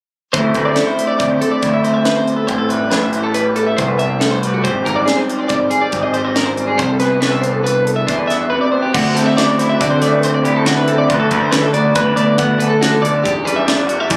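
Math rock and midwest emo in a playful, bright 5/4, this short cut from a longer piece sets a clean, compressed twelve-string electric guitar's up-front arpeggios, washed in analog delay, over a dark, slightly broken-up lo-fi electric guitar played through a small old amp with analog chorus. A growling, overdriven picked bass sits up front beside a crisp, polished fusion kit with bright cymbals, a high-tuned snare and a punchy kick, all four parts playing throughout. The chords move from Dsus2 through Am9, Abmaj7 and Cmaj9 before shifting at 8.9 s to D7, Bm7/D and Em7, heard as if captured on a phone in the room, with club reverb, compression and moderate studio reverb.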